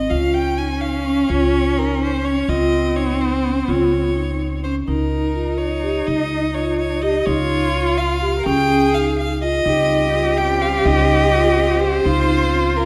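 Restless and playful, this contemporary chamber excerpt moves in a straight 5/8 at 251 BPM in eighths, with a clear, biting violin carrying the melody up front, a mellow vibraphone with soft mallets ringing out arpeggios, a woody pizzicato upright bass anchoring a low Db, and a rich, nasal cello with portamento weaving a second line, while a bright, lush string section slips in distantly with sustained chords at 9.7 s, all set on a moderate scoring-stage reverb over harmonies drifting from Dbmaj7 to Eb13/Db.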